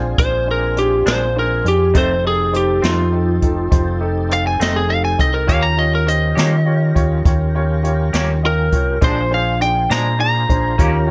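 A straight 12/8 slow blues at 68 BPM in Bb sets a rollicking, soulful mood in this short cut from a longer piece, with up-front brushed drums and a boomy kick under a dark, round, punchy fingered bass, a twangy, slightly broken-up lead guitar carrying the melody from 0.2 seconds, a bright baby grand with audible action noise, a lightly overdriven tonewheel organ with chorus vibrato and slow rotary in the background, and a lo-fi tremolo-tinged rhythm guitar joining at 1.1 seconds, all moving through Bb7, F7 and Eb7 in light reverb.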